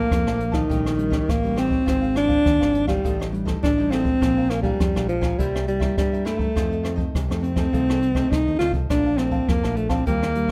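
A breathy, close-miked alto saxophone carries the yearning melody up front in a jazz style with vibrato, over a lively samba and choro groove that moves through jazzy seventh and extended chords. A jazz brush drum kit with a boomy kick, hi-hat and rim click sits up front with a natural small-room sound, joined by a warm, fingered electric bass, a crisp picked cavaquinho in the background and a very quiet, woody fingerpicked nylon-string guitar with old strings. The rough home demo mix carries light studio reverb, and this short excerpt is cut from a longer piece.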